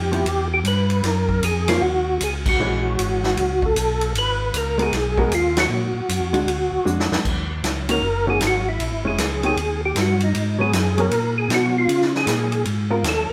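Soul jazz organ trio with a late-night, soulful mood, swinging at a brisk pace. A round, percussive tonewheel organ carries the melody through a slow rotary speaker and chorus vibrato, while a second, lightly overdriven organ sits up front on the bass line, joined by dark, clean hollow-body guitar accompaniment and a natural big-band drum kit with a punchy kick, playing ride, hi-hat, snare, kick and crash. The band plays live in a stone room, hitting accents at 2.4 and 5.5 seconds before a drum fill leads into an organ solo from 7.2 seconds in this excerpt cut from a longer piece.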